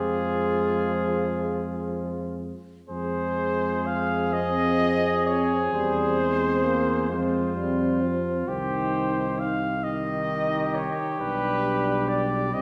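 Set in 6/8 at 43 dotted-quarter beats per minute, the pulse is uneven and rubato in this hymn-like classical passage for brass band in F minor, cut from a longer piece. The mood is melancholic and yearning: a mellow cornet carries the melody up front with light vibrato, a soft attack and a smooth top, while a clear flugelhorn sits close beside it on a second line. Beneath them, a euphonium with light vibrato stays in the background, a vintage-toned trombone adds its own gentle vibrato to the accompaniment, and a dark tuba anchors the bass. The five parts sound together throughout, with a new section opening at 2.9 seconds and harmony moving from F minor through C over E, back to F minor, then C minor, before arriving on G over B at 11.2 seconds. A wet reverb with the feel of a church or concert hall surrounds the ensemble.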